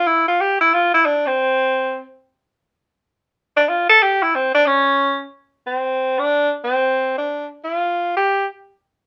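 A vintage-toned tenor saxophone with a warm subtone plays solo and up front from 0.0 to 8.5 s, in a cool, smoky jazz excerpt that swings at 183 BPM in 4/4, moves into a new section at 5.3 s, and sits in a moderate studio reverb.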